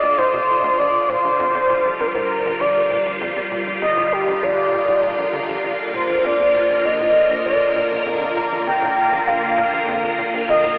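Hypnotic and cosmic, this ambient, sequencer-driven space music moves at 99 BPM in a straight 4/4, tuned to A4 = 436 Hz, and is cut from a longer piece. An expressive synth lead carries the melody up front, its smooth sawtooth-and-triangle tone soft in attack, dark, and colored by chorus, vibrato, shimmer reverb and analog delay. Beneath it a bright, swirling string machine holds sustained chords through ensemble chorus and a phaser, while a tight, punchy sequencer bass drives a saturated filter-plucked riff in the background, and a round sine sub bass sits very quiet underneath. The harmony moves from Dm to Bb6, then settles on Bb when the second section begins at 5.6 seconds, where a twinkling granular texture with octave-up shimmer enters, barely audible. The whole sits in a vast, echoing cathedral space with a long reverb tail, yet filtered to a narrow telephone sound.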